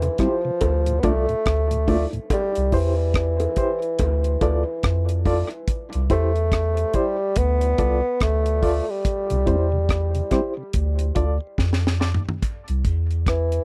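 Spacious and laid-back, this dry, close dub reggae excerpt puts a dark bassoon melody with light vibrato and tape echo up front, over a round, deep sub bass and an acoustic reggae drum kit with a tight kick and high-tuned snare. A reedy electric piano adds stabs with fast tremolo and tape echo, a flute-like tonewheel organ with chorus vibrato and key click comes and goes, and soft-handed bongos sit in the background, dropping out at 5.5 seconds and returning at 12.4 seconds. A filter sweep and a drum fill lead toward the close, where a very quiet, clean electric guitar appears briefly at 12.8 seconds.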